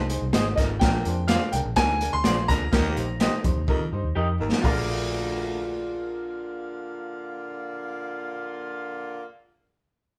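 A straight 4/4 groove at 126 BPM drives this danceable, uptempo 1960s-style soul excerpt in Bb mixolydian, with a crunchy breakbeat drum kit up front, its saturated, gritty hi-hat, tight kick and medium-tuned snare pumping in a small room until a drum fill closes its part at 4.7 seconds. A vintage muted fingered electric bass lays down a dark, round, punchy foam-muted line throughout, while a growling baritone saxophone plays a raspy, bright riff with vibrato in its low register until 6.0 seconds. A woody, slightly detuned upright piano accompanies from the background, and an electric guitar through a small old amp adds compressed, slightly broken-up, lo-fi picked stabs. A grand piano carries the melody high above from 0.6 seconds, and a tight horn section in jazz style enters at 2.7 seconds with a second line and a band accent as the chords move from Ab and Bb7 to Eb. The whole band plays live in one room under moderate studio reverb, giving the cut a warm feel as it returns to Bb7 for the next section.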